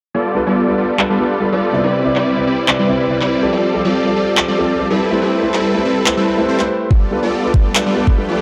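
A half-time 4/4 groove at 142 BPM underpins this playful, euphoric future bass excerpt in C major, with overdriven electronic handclaps up front from 1.0 s and a knocking, overdriven electronic kick drum arriving only at 6.9 s. Huge, detuned unison supersaw chords carry the riff from the start, colored by cassette tape, sidechain pumping, dub echo and a filter sweep that runs through the whole passage. Beneath them, an intimate, boxy grand piano plays accompaniment with long sustain and audible action noise, sharing the sidechain pumping and dub echo. The harmony moves from Cmaj9 through F69 and Am9 to a rootless Cmaj7sus2. A very quiet, ethereal pad with octave-up shimmer, chorus and phaser slips in at 7.7 s for the final moments. The production is dark and set in a lush hall reverb.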